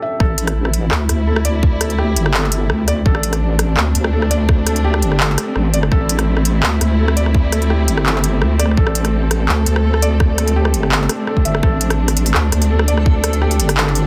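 A deep, soft wobble bass anchors this heavy, spacious half-time drum and bass excerpt in A minor at 168 BPM. It sits up front from 0.2 seconds with a saturated, compressed square-and-sine tone, mellow and sustained, thickened by chorus. A hard-clipped electronic kick and an industrial kit of handclaps, smooth hi-hats and rim clicks punch through a small room reverb with tape-warm, produced character, the kick dropping out at 13.1 seconds. Underneath, a dark symphonic string section bows lush, expressive sustained chords with vibrato and a sidechain pump. A felt-muted upright piano plays soft, intimate arpeggios with audible action noise, roughened by vintage 12-bit sampler grit and a digital delay. At 12.6 seconds a very quiet reversed, granular texture rises in, dreamy and detuned, over a dense, heavily limited master that is otherwise dry.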